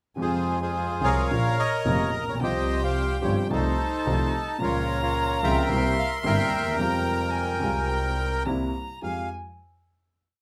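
A sultry, dramatic tango in F minor opens at 0.2 seconds with bandoneon, violin, piano and double bass all sounding together at 109 BPM in 4/4, with a rubato feel. The reedy, close-miked bandoneon sits up front and dry, carrying a full-bodied, motif-based melody built in sentence-like phrases. Above it, a single bowed violin with vibrato traces a smooth, even counter-melody, while one bowed double bass anchors the low end. The intimate grand piano, with its deep bass and audible action noise, plays a tango rhythm of uneven groups of three and two eighths, and the bass plays that same rhythm. The harmony moves from Fm through Bbm, Csus4 and C7, and the complete piece comes to rest on a final Fmadd9 chord at 9.0 seconds, all set in a wet club ambience with a short reverb.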